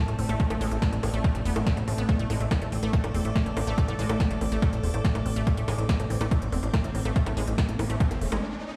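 Driving straight 4/4 at 142 BPM in A minor, this intense, hypnotic psychedelic trance excerpt rides an up-front overdriven kick and a punchy big-room kit of snare, crisp hats and bongos under a fat, nasal, tube-saturated analog bass, a lush detuned unison pluck riff with tape echo, a morphing wavetable pad with ensemble chorus and phaser, and an airy, breathy chorused pad. The pluck and both pads pump with sidechain in a stone room until an electronic riser enters at 7.1 s and the music stops at 8.4 s.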